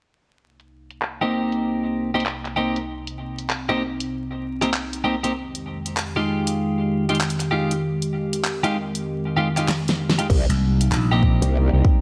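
Swung 16ths at 97 BPM drive this playful, swaggering glitch hop excerpt in C minor. A lo-fi, warbling tape-like pad holds Cm7 and Fm9 chords under a filter sweep and sidechain pumping, while a pop drum kit with a fat, low-passed snare, handclaps, hi-hat and crash sets the groove, with a fill at 9.7 seconds. A twangy twelve-string electric guitar plays clean stabs through tape echo throughout. At 10.3 seconds a wobbling, saturated growl bass and a punchy electronic kick arrive up front, joined at 10.5 seconds by a bright, amped vintage slap bass, the whole mix sitting in light reverb and vinyl crackle.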